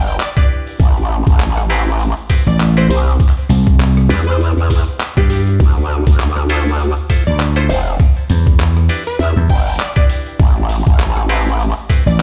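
A swung sixteenth-note groove in 4/4 drives this gritty, playful glitch hop excerpt, anchored by a thumpy, pitched-down electronic kick that sits up front from 0.4 seconds. Around it, a sampler-style boom bap kit of handclaps, hi-hat and rim click adds overdriven crunch and sounds re-recorded in a small room. The low end opens with a growling, wobbling bass shaped by a formant filter and chorus. A punchy, amped slap bass joins it at 2.5 seconds, and both sit prominently in the mix. A twangy, nasal clav plays stabs through a combo amp with sidechain pumping and tape echo, while a detuned sawtooth unison lead carries the catchy melody through phaser, cassette tape colouring and tape echo. The harmony circles Em7, Am9, Cmaj7 and Dm7, and the track sounds as if played on a big sound system in a bare room with stone reverb.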